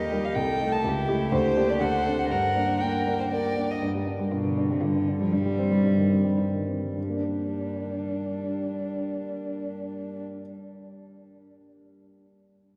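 Restless and dramatic, this quick classical-period piano quartet movement in triple time moves with a rubato feel. A polished, up-front grand piano carries the accompaniment beneath a dark, woody violin melody sung with vibrato. An intimate, airy second violin played sul tasto pairs with a pure, floating, distant cello on the supporting lines until the second violin drops out at 3.8 seconds. The pace slows between 3.1 and 7.0 seconds, all set in the long, echoing wash of a vast cathedral.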